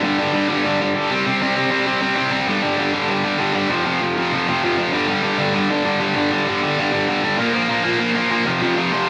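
Energetic and rowdy, this punk fragment, cut from a longer piece, charges ahead at 196 BPM in a straight 4/4 feel. A single electric guitar carries the whole 9.1 seconds on its own, picked with a tight, bright, distorted tone that sits up front and is double-tracked for extra heft. Its part moves through power chords on G, C and F in the opening section, then returns to G at 4.9 seconds before shifting to Bb and back to F in the second section. Cassette tape coloring and an analog delay add grit and a trailing echo to the guitar, while a light reverb gives the room a little air. The sound has the rough, homemade character of a cassette recording made at home.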